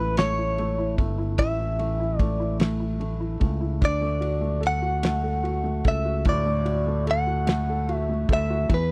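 A dry, close 1970s-style studio sound frames this brief, dramatic and aching six-eight pop ballad cut from a longer piece at 49 BPM, where a bright, clean, compressed direct-recorded electric guitar carries the melody up front over a soft, felt-muted upright piano, a round fingered electric bass, and a damped 70s drum kit with a fat snare, tight kick and ride cymbal that enters at 0.2 seconds, as the harmony moves from A to D at 3.8 seconds.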